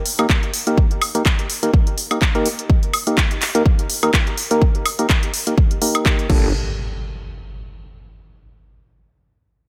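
Bass house at 125 BPM in 4/4, with a swung sixteenth-note feel and a bouncy, gritty mood, cut from a longer piece. A punchy, up-front electronic kick and a crisp house drum kit of hi-hats, handclaps, woodblock and crash cymbal drive the groove, both carrying studio reverb. Over an Eb harmony, a hollow, percussive organ stab plays through the opening section with a dark, decaying tone, treated with chorus, delay and sidechain pumping. At 6.3 s the chord shifts to Gmadd9 as a nasal, resonant vowel-sweep wobble bass appears briefly on a low G, overdriven and pumping. An electronic impact hits at 6.4 s and rings on into the sparser closing section, where the harmony drops out and light reverb colours the mix.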